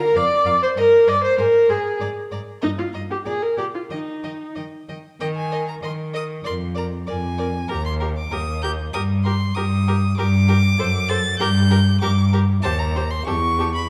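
In a quick, straight 2/4 at 97 BPM, this lively, graceful classical-period string quartet movement, cut from a longer piece, turns from Eb major toward G minor at 10.2 seconds. The first violin carries a smooth, even melody high in its range with vibrato, while the second violin adds a clear, focused line in the background. The viola accompaniment and cello bass sound rich, distant yet up front, and sit louder than the violins, all within a moderate scoring-stage reverb and a dark production.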